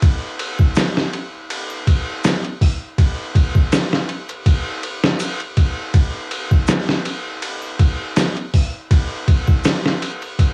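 A cassette-made home recording with vinyl crackle and light reverb frames this brooding, cinematic trip hop fragment in a swung 4/4, where an up-front, gritty, pitched-down sampler-style kit of thumpy kick, medium-tuned snare, hi-hat and ride cymbal carries the 10.5 seconds, joined at 0.6 seconds by a very quiet, saturated layer of triangle, tube shaker and group handclap.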